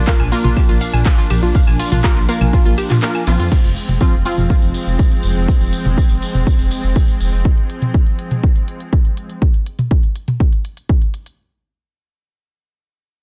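A dense, heavily limited and dry master carries this hypnotic, dark melodic techno excerpt in F dorian at 122 BPM, where a punchy, tape-warmed electronic kick sits up front beside a crisp-hatted house drum kit of claves, handclaps, hi-hat, ride, crash and toms and a faint, jingly tambourine, while a deep, rumbling detuned saw bass, bright, distant symphonic strings holding sustained chords, brassy, nasal synth stabs and round, chorused analog pluck arpeggios all pump under sidechaining, the plucks falling away at 3.5 s just after the kick drops out from 3.0 to 3.5 s as the harmony moves from Bb to Fm.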